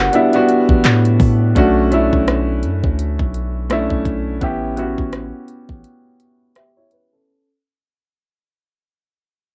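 A moody, longing contemporary R&B excerpt at 84 BPM opens with a soft, round synth lead that sits dark in the background with chorus, phaser and vibrato, over a vintage concert grand piano and a deep, sine-toned 808-style bass. A trap drum kit with a knocking kick, crisp hats, handclaps and rim clicks swings on the 16ths, its overdriven, tape-worn sound placed up front alongside the smooth piano and mellow bass. The lead's melody ends at 1.2 seconds, the piece fades out from 1.6 seconds under a filter sweep on the piano, and a break arrives at 5.8 seconds as the bass stops, all within a lightly reverberant home cassette recording.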